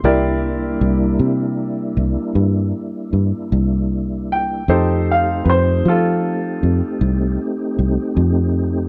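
The sound is soaked in worn, warbly old cassette tape with a drifting pitch and a light reverb, giving this slow, laid-back blues a gritty, lived-in feel. At 52 BPM in a straight 12/8 and C mixolydian, it moves from a C9 chord to F9 at 4.7 seconds. A woody, polished upright piano sits up front as the soloing voice, its short-sustained notes ranging from F4 to C6 before it stops at 7.4 seconds. Beneath it, a clear grand piano with a faded edge plays accompaniment in a narrow middle range, while a soft, flute-like tonewheel organ holds sustained chords through a slow rotary speaker and chorus vibrato. A round, foam-muted fingered electric bass, dark and directly amped, anchors the low end up front. This fragment is cut from a longer piece.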